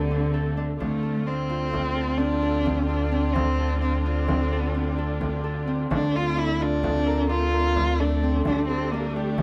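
A dark, bowed solo cello carries the melody from the start with vibrato and expressive portamento, over warm sustained chords from a studio string section, ringing fingerpicked arpeggios on a Celtic harp, and a mellow gliding synth bass held on D. This is pensive, hypnotic contemporary chamber music in D minor, moving in an uneven 11/8 at 259 BPM counted in eighths, with the harmony settling from Dm7 to Bbmaj7/D and then A7sus4/D. A deep frame drum, recorded in a small room, joins in the background at 0.3 seconds, and light reverb gently colours this cut from a longer piece.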